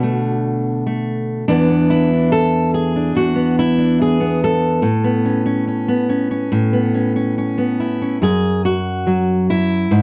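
A steady, straight 4/4 pulse at 71 BPM carries this short folk passage, cut from a longer piece, in A major and tuned a touch high at A4 = 441 Hz. A lone fingerpicked steel-string acoustic guitar plays throughout, spanning E2 to A4 and sitting up front in the mix with a warm, auditorium-sized body. The harmony moves from Bm7 to E5 at 1.5 seconds and settles on Aadd9 at 4.8 seconds, until the chords fall away at 8.2 seconds for a brief closing stretch. A wet, small-room reverb and a dark production lend the guitar an intimate glow. The mood is nostalgic and peaceful.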